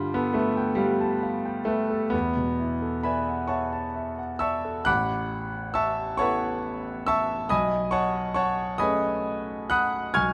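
Classical, impressionist solo piano in A major, this short passage cut from a longer piece moves at a slow 45 beats per minute in 6/8, with uneven, rubato beats that give it a hazy, luminous mood. A bright concert grand carries everything alone, spanning from deep bass up into glittering high register, its tone brilliant and polished, with the click of the action audible up close. Lush extended harmonies drift from G9 to E9sus4, then at 4.9 seconds a second section opens on Aadd9 before moving to B13. The piano sits present and intimate at the front of a recital hall whose moderate reverb gives a gentle bloom, while the overall production leans dark and warm.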